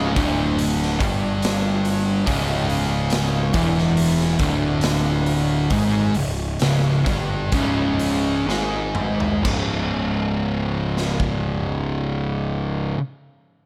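Stoner and doom metal at 60-71 BPM, this sludgy, heavy excerpt sets a dark, double-tracked fuzz guitar riff up front over a growly, overdriven picked bass and a saturated, gritty raw garage drum kit with a punchy kick in a bright stone room, slowing down from 2.3 seconds until a drum fill at 8.5 seconds leads from C#m into a C#5 passage at 9.5 seconds.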